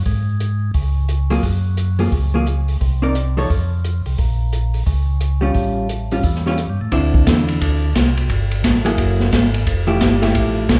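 A lightly overdriven tonewheel organ with audible key click carries a piping, scooped bass line from the start, joined by a dark, boomy-kicked acoustic drum kit with smooth, dusky cymbals on hi-hat, ride, snare and kick, and from 1.3 seconds by a clean, compressed hollow-body electric guitar comping in a smoky, soulful soul jazz organ trio swing, all heard up front within a moderate recital hall reverb in this fragment of a longer piece.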